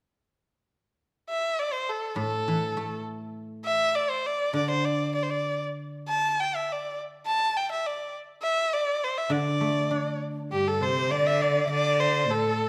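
Pastoral and graceful, this excerpt of Chinese traditional chamber music moves at a rubato 101 BPM in 2/4, set in the D shang mode. A rich, close erhu carries the bowed melody with vibrato and portamento from 1.3 seconds, while a ringing, silvery guzheng played with fingerpicks sits up front in accompaniment. At 10.5 seconds a bright bamboo dizi with a buzzing membrane joins in the background, alongside a clear, focused bowed cello, both as second lines in a moderate stage reverb.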